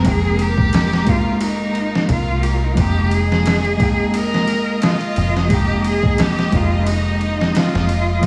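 A rich, bowed cello carries the melody with vibrato, its focused, distant tone trailed by tape echo across this brooding, cinematic trip hop excerpt in F minor at 88 BPM. Beneath it, a sampler-style drum kit sounds gritty and pitched down, with a thumpy kick, a medium-tuned snare and a ride cymbal, compressed and overdriven, riding a 4/4 groove with a light sixteenth-note swing. A deep dub bass, fingered and foam-muted, gives a round, punchy low end, while a mellow, clean electric guitar played with the fingers adds dark accompaniment shimmering with tremolo. A violin section sits further back, holding lush, bowed sustained chords with a clear studio sheen. The whole passage rests on a single Fm11 chord for its 8.3 seconds, with vinyl crackle and little reverb keeping the sound close and dry.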